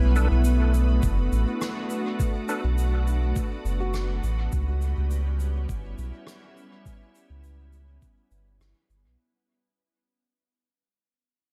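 A dark, warm production with light reverb frames this hazy, spacious ambient dub fragment, cut from a longer piece and fading out across its full 9.2 seconds. At 103 BPM in 4/4 with a gentle swing on the sixteenths, a calm, warbling organ-like pad holds sustained chords from Bm7 to C#m7b5, its slow attack and ensemble chorus giving it a vintage shimmer. Beneath it, a deep, round dub sub bass sits up front with a touch of tube saturation. A reedy tonewheel organ adds brief stabs in the background until 2.6 seconds, lightly overdriven with key click, fast rotary speaker, gritty sampler texture and dub echo. An acoustic shaker and rim click, carried in a natural hall with echo, enter at 0.2 seconds, and a muffled, thumpy, pitched-down kick joins them at 1.0 seconds, while a felt-muted upright piano offers intimate, mellow arpeggios on F#4 between 3.8 and 5.7 seconds.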